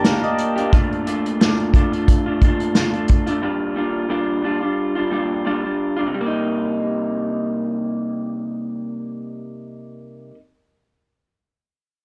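This mellow, hazy slice of indie and bedroom pop at 89 BPM in C dorian opens on an Ebmaj7 chord with a brief fill of soft, round electric-piano-like synth keys tinted by chorus, tremolo and cassette-tape character. Alongside them comes a distant, roomy unplugged drum kit played with bundle sticks, its punchy kick, medium-tuned snare and hi-hat carrying a light sixteenth-note swing until 3.4 seconds. Up front, an electric guitar through a small old amp sounds slightly broken-up, picked and compressed, with subtle chorus and vibrato, as it moves through Bbmaj7 and Gm7/Bb before settling on Cm7 when a new section begins at 6.1 seconds, all wrapped in light reverb and a dark, warm production.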